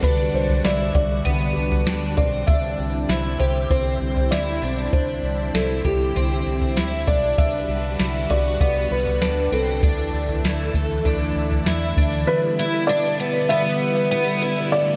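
Floating and blissful, this dream pop excerpt moves at 98 BPM in a straight 4/4, set in C lydian and cut from a longer piece. A felt-muted upright piano carries the melody with a soft, mellow, intimate tone, its notes trailed by digital delay and slapback echo. Underneath, a string machine holds lush sawtooth chords with a sub octave, soft attack and long release, colored by phaser and ensemble chorus. Up front, a picked twelve-string acoustic guitar plays shimmering, octave-doubled arpeggios with audible finger squeak, treated with analog chorus, delay and slapback. A foam-muted fingered electric bass gives a round, punchy low end, and an overdriven vintage rhythm box with a deep kick, crisp snare and toms sits in the background. The drums drop out at 12.1 seconds and the bass at 12.2 seconds, leaving piano, strings and guitar over an Em7 chord as a new section begins at 12.3 seconds. 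The whole mix is bathed in a lush hall reverb that gives it a big arena sound.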